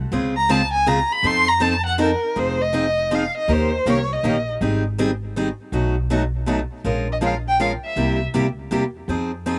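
A warm, expressive bowed violin leads this swinging, virtuosic snippet of acoustic string swing in waltz time, its vibrato and portamento set off by a slapback echo as it solos from 0.4 seconds and returns briefly at 7.1 seconds. Up front beside it, a bright, boxy parlour guitar with fresh strings is picked as accompaniment, with audible finger squeak. A woody, thumpy pizzicato upright bass anchors the low end beneath them, all heard in an open-air recording with little reverb.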